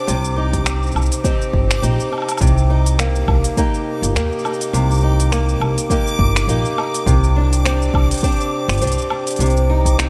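Wistful and intimate, this short folktronica passage feels like a quiet glimpse taken from a longer piece, set in 4/4 with a gentle swung lilt on the sixteenths. An old ladder-braced acoustic guitar sits up front, picking arpeggios with a boxy, woody tone from worn strings, colored by a subtle chorus and tape echo. Beside it, a pizzicato upright bass with steel strings adds a warm, close low end, while a reversed, granular texture hovers high above, swelling dreamily with a soft attack, a bright detuned shimmer and a long release in its own reverb. The rhythm comes from a smooth, produced electronic kit of finger snaps, hi-hat, shaker and woodblock, joined at 0.5 s by a deep electronic kick, both placed in studio reverb. The harmony rests on Cm9/G before moving to Gsus4/C at 7.1 s and settling on Cmadd9 at 9.4 s, the whole passage held in a light room reverb.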